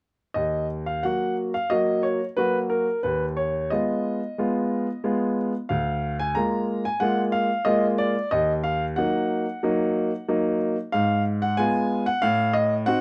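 Classical-period piano sonatina excerpt in 4/4 with a rubato feel, elegant and restless, played solo on a clear, intimate, natural-sounding baby grand with audible action noise and long sustain, set up front in light reverb and a dark, warm production from 0.3 to 13.0 seconds, its harmony moving through diminished and half-diminished colours before closing on an unresolved diminished chord at 12.2 seconds.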